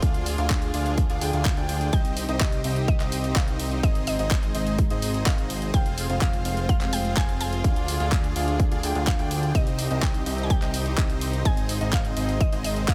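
Set in a digital ambience, this euphoric, powerful festival progressive house excerpt in C minor at 126 BPM drives a punchy, up-front electronic kick and a pop drum kit with handclaps and hi-hat under a huge, detuned supersaw riff with delay, a fat, saturated analog bass, dark background strings and a mellow, boxy piano arpeggio, all four pumping with the sidechain, while a woody, round synth pluck carries the melody from 1.9 seconds over chords moving from Ddim through Cm, Ab and Fm.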